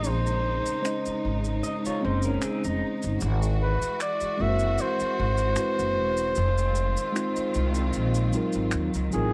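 Smooth and introspective, this short cut from a longer neo-soul R&B piece moves in 4/4 with a gentle swing on the sixteenths. A warm, close-miked flugelhorn carries the melody up front, its soft attack, scooped notes and light vibrato giving it a relaxed jazz voice. Beneath it, a mellow, clean tine electric piano supplies the accompaniment, while a focused, bowed studio string section holds sustained chords with a smooth top. A growly, woody pizzicato upright bass sits prominently in the mix, and close, dry maracas and finger snaps keep time quietly. Between 1.6 and 3.2 seconds, a slightly broken-up, lo-fi electric guitar through a small old amp adds a brief second line shimmering with harmonic tremolo, over a progression that moves from Bbm11 through Ab7alt and Fm7 to Ebm69, all set in a dry room with a layer of vinyl crackle.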